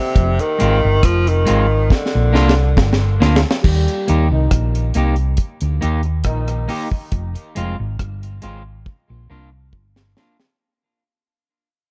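A straight 4/4 roots reggae groove at 69 BPM in Eb major sets a sunny mood: a dry, dark drum kit with a high-tuned snare and tight kick sits up front beside a round, amped hollow-body bass, while a slightly broken-up electric guitar with tape echo comps beneath a distant, roomy tenor saxophone whose vibrato-tinged melody, also echoed, lasts until 3.2 seconds, and from 3.6 seconds a mellow trombone section with tape echo carries a second line as the music fades out in a lightly reverberant space.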